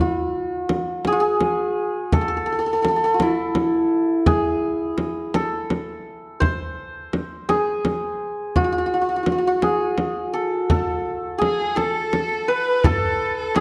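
A hammered, shimmering santur opens this short fragment of a longing, melancholic Persian modal piece in A avaz esfahan, carrying the melody up front between E4 and C5. At 0.7 seconds a deep, large frame drum joins, played with hard hands and sounding close and dry, sitting up front in the mix at a steady 56 BPM in a straight 6/8 felt in dotted quarters. The santur's ringing tone leads the opening stretch, while the frame drum keeps the slow pulse underneath. At 11.4 seconds a single bowed kamancheh enters as a second line, its clear, focused voice carrying vibrato and sounding up front yet distant, within a narrow range from G#4 to B4. Shortly after, at 12.8 seconds, a tight tombak, also struck with hard hands, appears in the background with a small-room character, and the whole ensemble sits in a moderate scoring-stage reverb with a 1.5-second decay.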